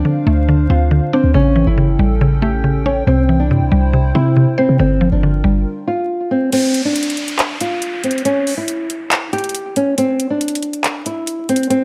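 A light reverb and a layer of vinyl crackle frame this hard-hitting yet melancholic trap cut, taken from a longer piece and set at 139 BPM with a half-time feel in 4/4. A thumb-plucked nylon-string guitar carries the melody up front, its classical tone softened by a low-pass filter and delay, with audible finger squeak, and it plays through to the end. Beneath it, a woody, round, mallet-like FM synth pluck adds percussive accompaniment with a short decay and chorus, while a hollow, flute-like pad holds airy, mellow chords over a progression of Dm7, A7, C and Gm7. A deep, boomy 808-style bass with a clean sine tone and fast attack anchors the opening until the bass and pad stop at 5.7 seconds, so the guitar and pluck carry on by themselves for a brief stretch. At 6.5 seconds the harmony drops away and a break begins, as an electronic trap kit of crash cymbal, handclaps and metallic hi-hats joins the guitar alongside a downlifter effect.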